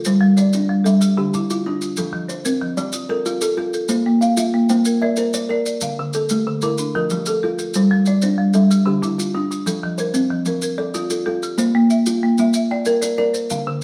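Southern African traditional music built on an mbira-style interlocking cycle, this warm, hypnotic excerpt moves at 125 BPM in a straight 12/8, circling through Dm, F and Bb in F major. A plucked, airy kalimba with short, woody notes and a dry, rustic folk marimba struck with medium hard mallets sit up front, both playing arpeggios, the marimba dark and percussive, while grainy, mellow maracas sound close and dry. The band plays live together in a stone room whose reverb gives the sound a wet sheen.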